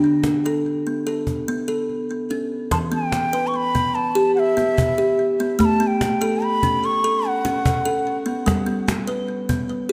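A ringing, woody kalimba opens this hypnotic, gentle world meditative excerpt in 7/8 with delayed arpeggios, joined almost at once by a cajon with faint snares, before a breathy, reedy bansuri enters at 2.7 seconds with a delayed melody that lasts until 8.2 seconds, the whole set in a wet echo-chamber reverb.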